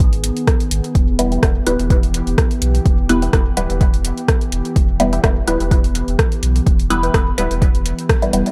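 Lightly reverberant digital ambience frames this cavernous, meditative dub techno excerpt at 126 BPM with a gentle 16th-note swing, where an overdriven, up-front electronic kick and a small-room deep house kit of hi-hat and rim click drive a clean, smooth sine sub bass and a warbling, nostalgic lo-fi pad, both pumping beneath muted, detuned sawtooth chord stabs that enter at 1.2 seconds with phaser, dub echo and a filter sweep, joined by a fainter, dark stab riff in the background over G#m and Em chords before a band accent at 8.1 seconds.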